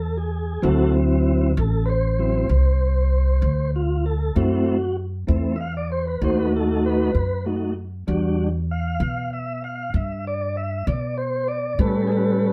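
Rolling along in a straight 12/8 at 65 BPM, this swaggering, rollicking slow blues excerpt in D mixolydian has a smooth, clean tonewheel organ leading with sustained chords, its key click and vibrato turning through a slow rotary speaker, while a woody, thumpy pizzicato upright bass sits up front beside it as the harmony moves from D9 through F#m7b5, B7 and Em7 to A9, all heard as a band playing live in one room with moderate studio reverb.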